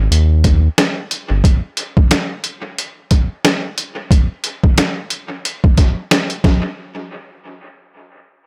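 A swung 90 BPM boom-bap hip-hop groove in 4/4 sets a tough, reflective mood, with a round, dark analog bass sitting deep and up front only until 1.4 s, while a muffled, pitched-down sampler-style trip hop kit of thumpy kick, medium-tuned snare and hi-hat plays to 6.6 s, compressed and overdriven, re-recorded in a small room and soaked in dub echo within an echo-heavy mix carrying little reverb.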